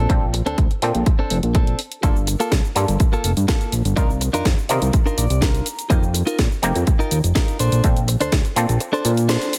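Funky and groovy, this filtered disco house excerpt at 124 BPM rides on a fat, detuned sawtooth analog bass with tube saturation and a punchy, up-front electronic kick, while a bright, direct-recorded clean electric guitar riff carries vintage 12-bit sampler grit, an overdriven auto-wah clav adds stringy, twangy accompaniment through a phaser, and a tape-warm house kit of cabasa, hi-hat and cracking snare fills out the dry mix, with the bass, guitar and clav pumping under sidechain and a low-pass filter over Bbmaj9, Cm11 and F7sus4 chords, a guitar fill at 4.9 s and a band accent at 9.3 s.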